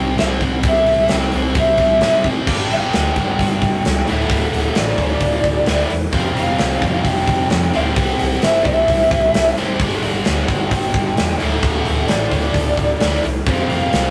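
Swaggering and driving, this classic rock excerpt charges along at 131 BPM in a straight 4/4. A lead guitar through a small cranked amp carries the melody with a picked, overdriven, lo-fi bite, sitting high above a sludgy distorted guitar riff that is double-tracked and pushed up front. Beneath them, a hollow-body short-scale electric bass played with the fingers adds a dark, round, punchy low end. A huge arena drum kit comes in at 0.2 seconds with a punchy kick, medium-tuned snare, hi-hat and bright crash cymbals in a pumping room sound. The harmony cycles through C, G, Dadd9 and Fsus2, with a short opening passage giving way at 2.5 seconds to a longer section. The whole thing has the rough, immediate feel of a rehearsal-room take under moderate reverb.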